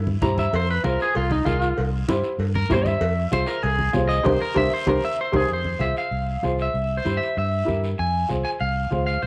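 Heard through worn, warbling old tape with light reverb, this fiery, driving cumbia fragment is cut from a longer piece, with a round, dark fingered electric bass and a twangy, slightly broken-up electric guitar up front, the guitar bathed in spring reverb and taking a solo through the first 5.5 seconds. A clear, woody upright piano, a touch detuned, fills in the accompaniment, while hard-handed congas, a raspy guiro and ringing, band-limited cowbell and timbales sit in the background. A band accent arrives at 4.2 seconds with a drum fill from 4.7 seconds, and the cowbell and timbales drop out at 5.4 seconds as the music moves into a new section.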